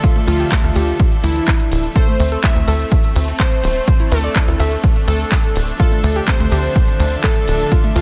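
Over a straight 4/4 pulse at 125 BPM, a punchy, up-front electronic kick and a house kit of handclaps, hi-hat and ride cymbal with tape-warm hats drive this bittersweet, expansive progressive house excerpt in D minor, with a tight sawtooth sequencer bass entering at 0.3 seconds and pumping against the kick. A catchy, full-bodied detuned unison lead carries the melody with delay, while a soft, round chorused pluck spins arpeggios and a rich, bowed string section holds smooth sustained chords, all three breathing with sidechain pumping. The chords move from Dmadd9 to Am/D and back, and the dry, close sound keeps the parts clear and forward.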